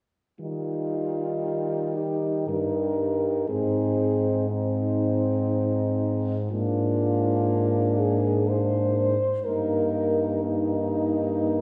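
Heard from further back in a wet concert hall with a 2.0 s reverb tail and dulled highs, this tender classical excerpt for horn quartet unfolds at a rubato 60 BPM in 3/4 in Eb major, with four French horns sounding together from 0.4 to 11.6 s, all with light vibrato: a mellow, smooth-topped horn carries the melody, a warm, soft-attacked, close-miked horn sings the second line, a vintage-toned horn fills in the accompaniment, and an up-front horn holds the bass beneath chords moving from Eb through Ab and Bb7/Ab to Eb/G.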